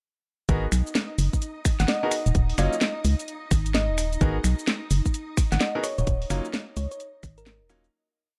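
Dark, moody late-night production opens this complete two-step UK garage piece in G# dorian at 129 BPM with a 63% swing: a tight, up-front kick and small-room garage kit of cracking snare, snaps, shaker and skipping swung hats drive a hollow, organ-like FM bass line, while a brilliant grand piano drops sparse echoing chord stabs, a silky string machine holds soft chorused chords, and a round, tine-like synth pluck enters at 1.8 seconds with short answering phrases before the whole drop fades out from 5.5 seconds.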